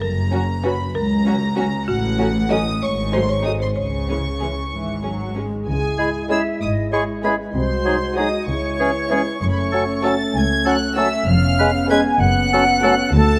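Sneaky and quirky, this whimsical film cue in C# minor moves at 64 BPM in 6/8, opening with a dry, rustic marimba carrying the melody beside a floating, distant high violin section over dark, sul tasto cellos and intimate double basses, with woody second violins and lush violas sitting in the background, until the marimba stops at 5.3 s and a hollow flute section and mellow French horn chords enter at 5.7 s, soon joined by an oboe with light vibrato, a background clarinet and a bassoon, the whole cue set in a moderate scoring stage reverb.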